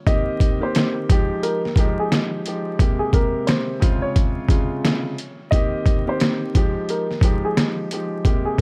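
Boom-bap hip-hop with a tough, dark mood, this short cut rides a swung groove from a compressed, pitched-down sampler-style drum kit whose thumpy kick, medium-tuned snare and hi-hat sit up front with a muffled, overdriven edge. A dark, mellow, vintage grand piano with audible action noise carries the intimate accompaniment through Cm7, Fm9, Abmaj9 and Dbmaj7, while a woody upright piano traces a short melody coloured by filtering and slapback echo. A small room ambience and vinyl crackle frame the sound, with the harmony shifting at 2.8 seconds.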